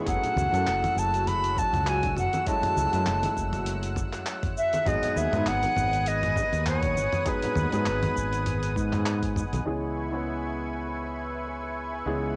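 A loose 16th-note swing at 100 BPM in 4/4 sets a wistful sunset chillout groove in C# minor, carried by a gritty, tape-dusted sampler-style kit with handclaps, hi-hat, shaker and toms, a thumpy electronic kick and ringing congas in the background, while a round, dark fretless bass sits up front over F#m9 and G#m7 chords. A reedy, straight-toned concert flute sings the melody until 9.1 seconds, framed by a brilliant baby grand piano with audible action noise and a lush, detuned unison pad with chorus and plate reverb. This excerpt of a longer piece closes on a band accent at 9.1 seconds and then a C#m7 passage from 9.7 seconds, where a filter sweep moves across the piano, all with a cassette-recorded, small-booth intimacy.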